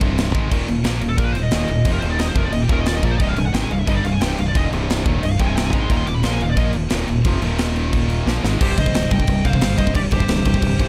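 A straight 4/4 pulse at 178 BPM drives this heavy, relentless heavy metal piece in C minor, cut from a longer track and moving between C minor and Eb5 chords. The tight metal drum kit sits up front with bright cymbals, a medium-tuned snare and a tight kick, sounding airy and polished as if in a big room, and a drum fill arrives just before 8.6 seconds. Underneath, a growling fingered electric bass, overdriven and direct, anchors the low end while three picked, distorted rhythm guitars play riffs in the background, one of them double-tracked and very quiet. A very quiet pipe organ on stopped flute stops holds soft, hollow sustained chords with a romantic voicing. From 1.1 seconds a bright, high-gain lead guitar with tape echo plays the melody as a solo, and at 8.6 seconds a darker second lead guitar joins with its own line. The production is dark and warm, with little reverb.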